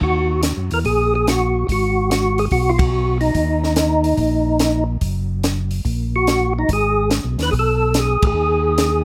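From the first beat a fat, percussive organ melody with key click turns slowly through its rotary speaker over a thick, lightly overdriven organ bass line and a dry cocktail drum kit with dark cymbals, a high-tuned snare and a punchy kick, setting a smoky, soulful swinging soul jazz groove in minor chords that the whole trio punctuates with accents at 2.7 and 8.1 seconds in this short cut from a longer piece.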